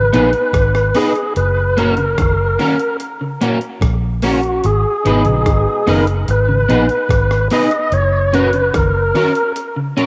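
Hypnotic and laid-back, this roots reggae excerpt sits at a relaxed 73 BPM in 4/4, moving between G# minor and F# chords over a straight feel. Up front, a fat tonewheel organ carries the melody with light overdrive, key click and a fast rotary speaker, its lines trailing tape echo. Beside it, an electric guitar at the edge of break-up plays picked accompaniment through ensemble chorus and echo, while a clean picked guitar spins arpeggios in the background. A dark, round, foam-muted bass sits prominently in the low end, and a brilliant, tight trombone section adds a vibrato-laden second line further back until it drops out at 6.8 s. A gritty, compressed sampler-style kit with a thumpy kick, hi-hat and rim click holds the groove and closes with a drum fill at 9.6 s. Moderate spring reverb and the character of a home cassette recording give the whole piece a lo-fi, homespun glow.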